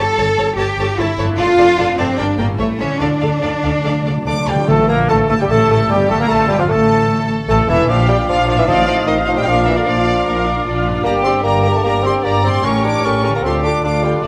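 A straight 4/4 pulse drives this dramatic, urgent classical excerpt, where lush bowed violin sections carry a distant melody and a focused upper line over expressive violas with portamento, ringing bright harp arpeggios, a smooth double bass section and rich cellos, while round soft-mallet timpani fills begin at 3.0 s, a bassoon enters at 4.3 s, and at 4.7 s a mellow oboe, an airy silver flute and roomy French horn chords join in, set within a moderate scoring-stage reverb.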